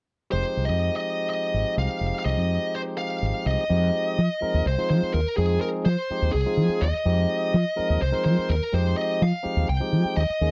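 Slick and intense, this excerpt of electric jazz fusion moves at 250 BPM in eighths, counted in a straight 7/8 in F minor, opening on an Fm9 chord and shifting into a new section at 3.7 seconds. A bluesy overdriven lead guitar carries the melody up front, dark and distorted with a picked attack and slapback echo, while a clear, clean tonewheel organ with a stopped rotary speaker supplies the accompaniment. Underneath, a mellow fretless electric bass sits round and punchy in the mix with analog chorus, all captured in a dry, close 1970s-style studio sound with light reverb.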